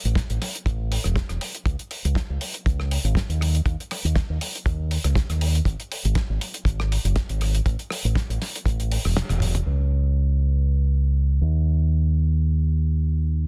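Sunny, groovy nu-disco at 120 BPM in 4/4 with a light sixteenth-note swing, cut from a longer piece. An up-front fingered electric bass runs through an envelope filter and tube saturation with a direct, amped tone, joined by a damped 70s kit of hi-hat, rim click, medium-tuned snare and toms that sounds dry and dark with a rolled-off top, plus a tight, smooth kick. After a band accent and drum fill at 9.2 seconds the kit stops at 9.6 seconds, leaving the bass alone until 13.5 seconds in a dense, heavily limited modern master with little reverb.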